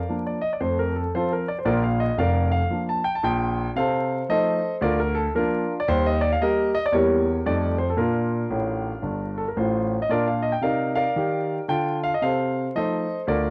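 A clear, natural-sounding concert grand piano sits up front with a deep bass, playing solo stride jazz in Bb major at 114 BPM with a swung 4/4 feel that is exuberant and playful. Its cassette-tape colouring and the home recording's vinyl crackle and moderate studio reverb give this short fragment a homespun, vintage character. The harmony moves through chords such as F7/C, Eb, Edim7 and F9, and the piano adds a fill from 8.5 to 10.1 seconds before the opening phrase begins again.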